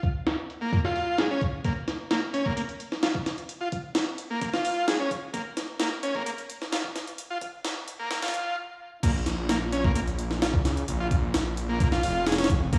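A gritty, funky breakbeat passage at 130 BPM in B-flat minor opens with a compressed, pitched-up sampler-style break of thumpy kick, high-tuned snare, hi-hat and crash under low-pass filtering and a filter sweep, joined at 0.6 seconds by a buzzy vintage combo organ riff with light vibrato and digital delay, building until a brief stop at 8.6 seconds before the drop at 9.0 seconds brings in a thick, menacing detuned saw bass with saturated, beating sustain, all set in a stone-room reverb as if blasted through a big sound system in a bare space.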